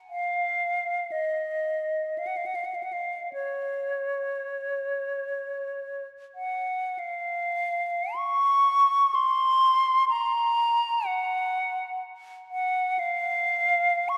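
A bright silver concert flute plays entirely alone from 0.1 to 14.2 seconds, its airy, metallic tone carrying gentle vibrato and soft attacks as it moves expressively between Db5 and Db6, placed up front. This meditative, mournful classical passage, cut from a longer piece, drifts in a free rubato around 40-64 BPM in 3/4, turning to a new section at 7.0 seconds. A wet church reverb with a 3.1-second decay surrounds the flute and lets each phrase hang in the space.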